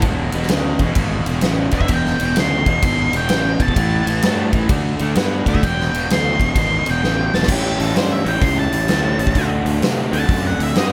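A raw, overdriven garage guitar sits up front, its picked, double-tracked riff driving this raunchy slice of blues rock power trio and southern rock at 129 BPM in a swung 4/4, centred on A mixolydian. Beneath it, a growly fingered electric bass with a punchy, fuzzed-out edge holds down the low end, while a huge arena drum kit with a fat snare and a punchy kick fills a big, natural-sounding room with crash, ride, hi-hat and kick. At 1.7 seconds a dark, octave-fuzz lead guitar joins, its distorted line trailed by analog delay. After a drum fill at 7.0 seconds, the lead guitar takes a solo from 7.5 seconds as the harmony moves through A7 and D7. The mix carries only light reverb, and the piece is cut from a longer performance.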